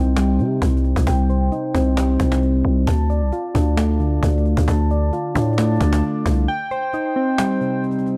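A dark production in a small room with light reverb frames this hard-hitting, melancholic half-time trap excerpt, where soft, round electric-piano-like synth keys play arpeggios colored by chorus, delay and a filter sweep, a growling, buzzy 808-style bass sits up front until it stops at 6.5 s for a short break, and a snappy, saturated cajon struck with hard hands carries the drums from 0.2 s.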